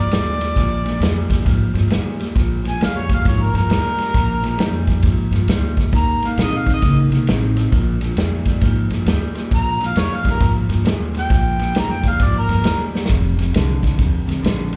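A mellow harmonica carries the melody in a jazz-style solo, its soft-attacked, scooped notes wavering with light vibrato and sitting distant and roomy under overdrive, plate reverb and slapback echo until it drops out at 12.8 seconds. This is a soulful, swaggering electric blues shuffle at 134 BPM in 4/4, swung on the eighths in B-flat mixolydian, moving from Bb6 through Eb5 and Bb5 to a closing F7(no3). Beneath the harmonica, an electric guitar through a small old amp plays a bright, slightly broken-up, twangy picked riff, coloured by spring reverb and its own slapback echo. An upright bass plucks a warm, woody line on steel strings, while a swinging big-band drum kit, coming in at 0.1 seconds, sits up front with a punchy kick, a medium-tuned snare and ride cymbal in a natural, big-room sound. A drum fill lands at 12.9 seconds, and the whole excerpt has the feel of a live club gig heard through the venue's PA, with light club reverb.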